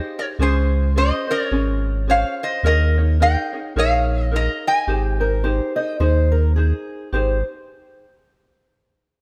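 Set in light reverb, this relaxed, dreamy Hawaiian piece swings gently as a bright, nasal metal-body resonator slide guitar, played up front with fingerpicks, carries the melody over a mellow fingerpicked ukulele and a deep, smooth pure sine sub bass that enters at 0.4 seconds, while a warm fingerpicked acoustic archtop guitar with audible finger squeak adds a second line from 5.2 seconds as the chords move from Dbmaj7 through Eb7sus4 to Abmaj7.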